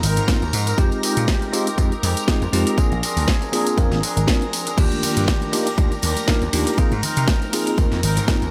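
Swirling, phased string-machine chords, a twangy, envelope-filtered electric guitar riff, punchy vintage slap bass and a house drum kit with a cracking snare pump together from the opening of this feel-good, joyful filtered disco house excerpt at 120 BPM in Eb major with a light 16th swing, joined at 0.3 seconds by a bell-like tine electric piano and an up-front electronic kick, with very quiet, hard-hit tambourine and congas arriving at 4.8 seconds, all in a dry mix over chords moving from Ab69 through Fm9 and Bb9 to Ebmaj9.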